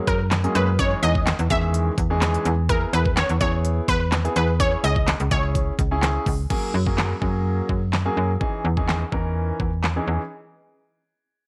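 Confident yet bittersweet, this dance-pop excerpt moves at 126 BPM in a straight 4/4, centred on C# dorian. A bright, detuned unison pluck carries the melody with a punchy, lush sawtooth edge and a slapback echo, sounding from the start until 6.0 seconds. Underneath, an intimate concert grand piano with audible action noise and long sustain supplies the accompaniment, its chords pumping against the sidechain, while a snappy FM bass with a metallic attack pumps the same way down low. The up-front pop drum kit layers a knocking kick, fat snare, crisp hi-hat, handclaps and crash cymbal with a tape-warm, produced character. The harmony cycles through F#add9, C#madd9/E, E and C#m, returning to F#add9 as a new section begins at 6.5 seconds, all set in light reverb and digital ambience.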